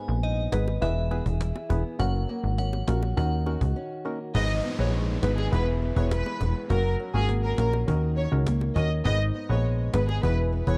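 Dancehall at 102 BPM in G# minor with a tough, sultry mood, where a punchy, up-front analog bass and snappy, dry cajon drive hollow organ stabs, a boxy fingerpicked archtop guitar with delay, very quiet high-tuned bongos and a glassy, warbling FM bell that drops out during a break starting at 3.8 seconds, making way for a lush, vibrato-rich violin section melody and a background downlifter from 4.3 seconds over a dark small-room production.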